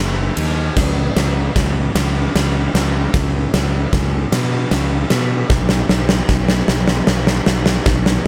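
Soaring and cinematic, this 6/8 post-rock fragment at 51 BPM builds from 0.0 seconds on a dark, round fuzz bass with overdrive, ranging from F#1 to B2, joined at 0.4 seconds by a huge, up-front arena drum kit with a punchy kick, medium-tuned snare, bright crash and ride cymbals and a pumping hall sound, playing one long fill through to the cut, all in a dry mix with little reverb.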